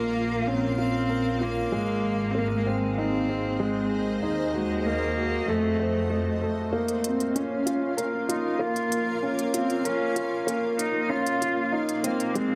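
A dark, mellow grand piano riff with tape echo opens this hypnotic, moving stretch of piano and strings electronica, joined at once by a clear, smooth solo cello melody through a low-pass filter and tape echo, a blurred, detuned granular pad holding sustained chords, and a focused bowed double bass section. At 6.7 s the bass section drops out and a build-up begins with a filter sweep on the cello, while crisp, tape-tinged electronic hi-hats enter at 6.9 s. A moderate, lush hall reverb surrounds the cut, which is taken from a longer piece.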